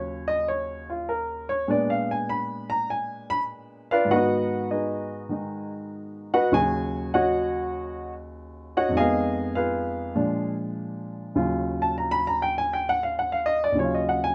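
Cool and swinging, this short solo jazz passage moves at 99 BPM in 4/4, with eighth notes swung at 69%. A baby grand piano carries everything alone from 0.0 to 14.3 seconds, ranging from Eb2 up to Cb6. Its tone is warm and natural, placed up front in a light reverb. Set in Eb minor and tuned to A4 = 435 Hz, the harmony opens on Ebm9 and passes through Bb7b9, Abm7, Ebm7 and Fm7b5 before reaching Bb7. At 11.4 seconds it returns to Ebm9 as the phrase begins again before the cut.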